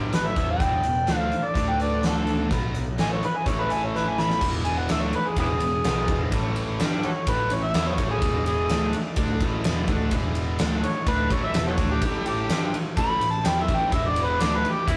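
A straight 4/4 groove from a huge arena drum kit with bright cymbals, a fat snare and a punchy kick drives this gritty, driving blues rock and southern rock passage, cut from a longer piece, as a round, fuzzy electric bass and a tight, double-tracked distorted guitar riff churn beneath an up-front overdriven harmonica that, after a drum fill at 3.9 seconds, takes a solo from 4.4 seconds with scooped notes, tongue slaps and light vibrato, while a dark, smooth lead guitar adds a very quiet second line until 4.4 seconds and a thick tonewheel organ through a slow rotary speaker holds very quiet sustained chords, the whole captured in a rough rehearsal-room sound with moderate reverb.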